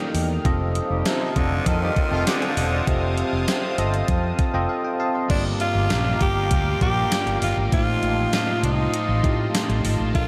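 1980s-style pop in a moody, dramatic vein at 99 BPM, this excerpt from a longer piece opens with a raspy, gritty tenor saxophone carrying the melody through a diffuse ambient delay, over a bell-like tine electric piano with subtle chorus, a sweeping, resonant sawtooth pad and a thumpy, overdriven digital drum machine whose snare rings with gated reverb. A round, dark fretless bass enters at 0.1 seconds, a distant horn section adds very quiet stabs between 0.9 and 2.5 seconds, and the electric piano plays a fill before a biting, double-tracked overdriven guitar slips in at 5.3 seconds as the chords move from F7 to Gm7. The whole mix is soaked in a huge, dreamy reverb.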